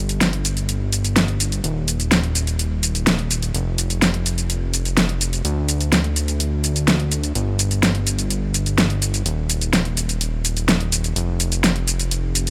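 This festival progressive house clip drives at 126 BPM in a straight 4/4, with a powerful, euphoric mood across its 12.5 seconds. A fat, detuned sawtooth bass sits up front from the start, its saturated, sustained notes hitting with a fast attack and moving through a filter sweep, while a layered electronic drum kit of hi-hat, shaker and a fat snare enters at 0.1 s. The drums are overdriven, with warm hats and the close feel of a small room, and the whole mix stays dry and upfront.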